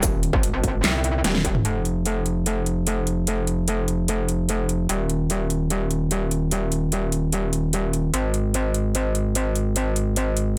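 A saturated, bright FM wobble bass dominates this heavy, aggressive half-time dubstep cut, grinding between Eb1 and C2 with overdrive and chorus, sitting up front and sustained for the full 10.6 seconds. It opens on a drop where a distorted, layered electronic kick hits until 1.5 seconds, and a drum fill at 1.2 seconds leads into the next section. From there the produced dubstep kit, present from the start, carries on with a huge snare, metallic hi-hats, handclaps, shaker and toms, all in a dry, close-sounding mix.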